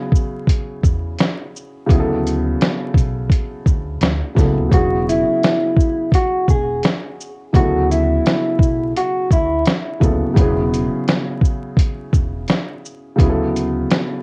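Hazy home-cassette sound with vinyl crackle and light reverb frames this melancholic lo-fi hip hop excerpt at 85 BPM in B dorian, swung on the sixteenths, where a thumpy, pitched-down sampler-style drum kit sits up front over a soft felt-muted upright piano with audible action noise and a woody pizzicato upright bass, while from 4.7 to 9.6 seconds a dark, slightly broken-up electric guitar through a small old amp carries the melody with analog delay as the harmony alternates between E and Bm11.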